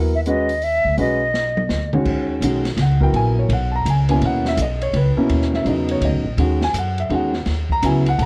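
A breathy, reedy silver flute with vibrato sounds a brief, close phrase between 0.2 and 1.9 seconds in this hypnotic, searching modal jazz excerpt, set in swung 3/4 at 166 BPM in Eb phrygian. An up-front grand piano with deep bass and a woody, thumpy pizzicato upright bass carry the harmony through Abm, Ebm7 and Dbm13. An airy small-room drum kit with dark cymbals and a boomy kick sits further back and plays a fill that ends as a new section begins at 2.1 seconds, while light reverb and worn, warbling cassette tape lend the recording a drifting pitch.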